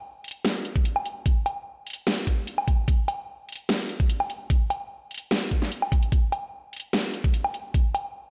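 A half-time dubstep groove at 148 BPM in 4/4 drives this short, chaotic and aggressive excerpt cut from a longer piece. A layered electronic drum kit opens at 0.2 seconds, its huge snare sitting up front alongside hi-hat and a woodblock. An electronic kick drum joins at 0.8 seconds, a knocking, produced layer placed up front and louder than the kit. Both drum parts carry a studio reverb, while a moderate plate reverb gives the whole mix a dreamy, soaked quality. The kick drops out at 7.8 seconds, and the kit plays on until 8.0 seconds.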